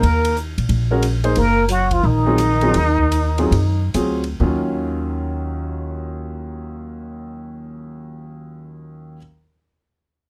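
A plunger-muted trumpet carries the melody in this short modal jazz excerpt, its breathy, whispered tone full of wah-wah colour, vibrato and scooped notes, sounding intimate yet slightly distant. Beneath it a dark trombone plays a second line with light vibrato, and both horns fall silent by about 4.0 seconds. A woody, thumpy upright bass on gut strings sits up front through the whole passage, while an open jazz kit with dark cymbals, hi-hat, ride and a boomy kick plays only the opening stretch. A clear concert grand piano enters at 0.9 seconds to accompany, its natural sound rich with deep bass and audible action noise, and it carries on to the end. In 4/4 with a swung feel and a tempo between 126 and 180 BPM that slows from 1.4 to 4.4 seconds, the music moves over Eb minor harmonies in a dry, searching and spiritual mood.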